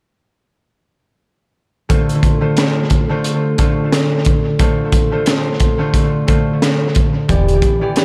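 Boom-bap hip hop with a tough, dark mood, swung on the sixteenths and cut from a longer piece. A fingerpicked concert harp sits up front with ringing, warm chords moving from Dm7 to Em7, shaded by cassette tape character, filtering and tape echo. The crunchy breakbeat kit enters alongside it at 1.9 seconds, with a punchy kick, a high-tuned snare and hi-hat, sounding saturated and gritty with a rolled-off top and its own tape echo. A pizzicato upright bass on gut strings adds a brief, woody, thumpy note at 7.3 seconds. The mix is echo-heavy with light reverb around the parts.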